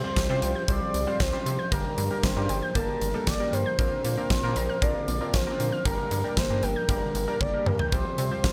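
A straight 4/4 groove from a huge, up-front arena drum kit with punchy kick and fat snare drives this nocturnal synth-pop excerpt, as a rubbery, bouncy square bass and round analog keys carry the Csus4, Gm and Bbadd9 chords beneath a smooth, dark, chorused lead with vibrato and portamento, while a lo-fi, detuned pluck plays arpeggios with chorus and digital delay in the background, a drum fill arrives at 7.4 seconds, and a lush unison pad is barely audible from 8.3 seconds.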